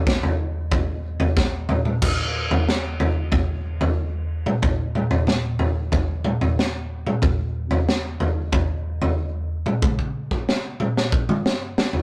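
A rough rehearsal-room recording with tube saturation and moderate studio reverb gives this dark, brooding rock excerpt a cramped, lived-in sound. A raw garage drum kit sits up front from 0.1 seconds at 92 BPM in a straight 4/4, its gritty, saturated tone marked by a punchy kick, a high-tuned snare, toms, crash cymbal, a pumping small room and a rolled-off top. After a brief opening passage the groove moves into a new section at 2.0 seconds, and a drum fill closes things out from 9.8 seconds.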